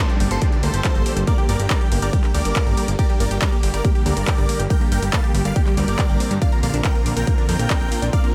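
A huge, euphoric detuned supersaw lead with phaser, delay and sidechain pumping soars over a lush, soft-attack supersaw pad, a tight, wave-folded sequenced arpeggio and a very quiet downlifter from the first moment of this soaring, bittersweet uplifting trance excerpt in G minor at 140 BPM, as tape-warm analog drum-machine handclaps and pumping hi-hats arrive at 0.1 s, a fat, detuned sawtooth bass with a filter sweep enters at 0.2 s, and a punchy, layered electronic kick sits up front from 0.4 s, all in digital ambience as the harmony moves from Gm to Bbadd9 at 6.4 s.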